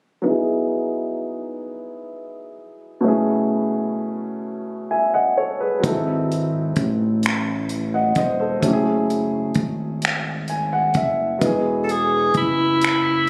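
Intimate and sensual, this slow R&B excerpt in 6/8 moves at 43 BPM in E major, cut from a longer piece. A mellow baby grand piano opens alone at 0.2 seconds, its audible action noise and short sustain close and natural, with a low-pass filter sweep shaping its tone as it moves through Emaj9, B13sus4, G#7b9b13 and F#m9 before a piano fill leads back to Emaj9. At 5.8 seconds a smooth, evolving synth bass built from detuned sawtooth and square waves arrives with a fast attack, sustained notes and vibrato, alongside a damped, dry 70s drum kit of finger snaps, hi-hat and a tight kick with a dark, rolled-off top. A breathy tenor saxophone takes a jazz-style solo at 11.8 seconds, clear and forward, with light vibrato, scooped notes and a soft top end. Every part sits up front in a light studio reverb, and the whole was captured on a phone in the room with compression.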